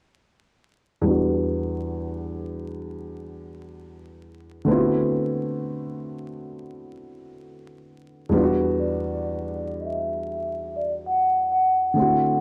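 A dark, woody upright piano with audible action noise opens this melancholic, reflective lo-fi hip hop excerpt at a slow 66 BPM in E minor, its filtered chords moving from Em9 to D13 under a filter sweep before a ringing, soft-mallet vibraphone with slow motor vibrato and tape echo takes the melody at 8.8 seconds, all set in a small, wet room with vinyl crackle.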